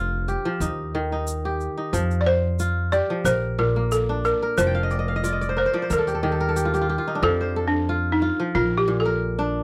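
Hypnotic and warm, this excerpt of West African string and xylophone music moves at 91 BPM in a straight 4/4, rooted in F mixolydian with chords circling F, Eb and Bb. A balafon carries the melody with a woody, buzzing tone from rubber mallets, sitting just forward in the mix. Fingerpicked kora arpeggios ring out bright and crisp up front, and the kora steps forward with a fill at 4.6 seconds. A thumpy pizzicato upright bass with steel strings anchors the low end up front, while a grainy tube shaker adds a faint, close texture until 6.8 seconds. At 7.2 seconds the music moves into a new section led by a balafon solo, all captured in a dry, close 1970s-style studio sound with little reverb.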